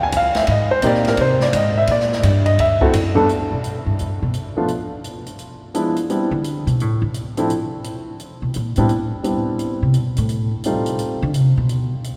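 Swinging and warm, this jazz piano trio excerpt moves at a brisk 171 BPM in 4/4 with a moderate swing on the eighth notes, settling into G major from 3.3 seconds. The grand piano carries the melody up front, taking a solo turn over the opening seconds through chords such as Abmaj7, Bb6 and D before landing on a rootless Gmaj7. From 3.3 seconds the upright bass takes the solo spotlight, its plucked steel strings sounding woody and thumpy as the harmony passes through E7b9, Amadd9, Cmaj9 and F9, with brief chordless stretches along the way. The acoustic drum kit sits lower in the balance, with dark cymbals on hi-hat and ride, a medium-tuned snare and a boomy kick, all captured with a natural small-room character. A heavy cathedral reverb with a long five-second tail bathes the trio, giving the performance the spacious glow of a church or concert hall as the fragment ends around 12 seconds.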